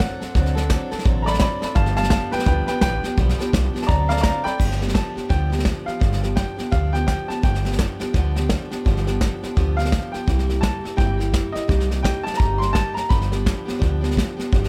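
Lightly reverberant and retro, this rowdy swung rockabilly excerpt opens with a woody upright piano solo in its first 4.6 seconds, then carries the piano melody over a full-bodied picked jumbo acoustic guitar, a dark, thumpy pizzicato gut-string upright bass and an up-front small-room brush kit with a punchy kick, as dominant-seventh chords turn briefly to a minor seventh near the cut-off at 14.7 seconds.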